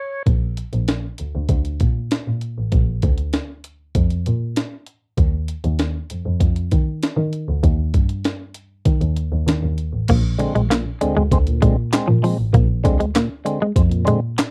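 A dark, bowed double bass with a nasal, boxy tone sits up front in this strutting, energetic funk cut in Bb mixolydian at 98 BPM: after a band accent from a percussive tonewheel organ at 0.0 seconds, the bass enters at 0.3 seconds with a gritty, compressed breakbeat sampler-style kit of thumpy kick, high-tuned snare, hi-hat, handclaps and crash, and the organ returns at 10.1 seconds with key-click stabs through a slow rotary speaker over a Bb9 chord, alongside a clean, hollow-body riff on semi-hollow electric guitar, captured in a dry, close 1970s-style studio sound.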